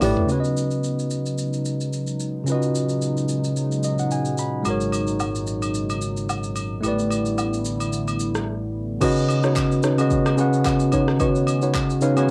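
Amapiano in a relaxed, soulful mood, this short cut from a longer piece features a clean, up-front tine electric piano accompaniment, with fills at 3.6 and 11.7 seconds. A hollow, flute-like pad with sidechain pumping sits in the background, and a tape-warmed deep house kit with kick, claps, rim clicks, shaker, toms and crash carries the groove. Agogo bells and woodblock return at 4.7 seconds alongside a growly, punchy fretless bass, and after a break the warbling, vintage chord stabs with tape echo return at 9.0 seconds, all captured with a homespun cassette character in a small booth.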